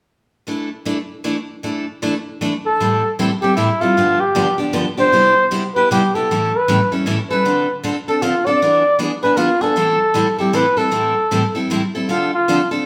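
Jazz waltz in A minor at 155 BPM in 3/4, swinging its eighth notes with a fiery mood. A picked steel-string acoustic guitar opens alone at 0.5 s, bright and up front, laying down the chords from a suspended E7 into a minor progression that moves through Am7, G7, Cmaj7, A7, Dm7 and E7. At 2.7 s a mellow flugelhorn takes the melody as a jazz-style solo, its smooth top and vibrato sitting slightly forward of the guitar in the mix. The two play live together in a large studio with moderate reverb, giving the sound a natural, roomy ambience. This cut from a longer piece closes on a Dm7 around 12.1 s, with the horn stopping at 12.7 s and the guitar ringing on briefly after.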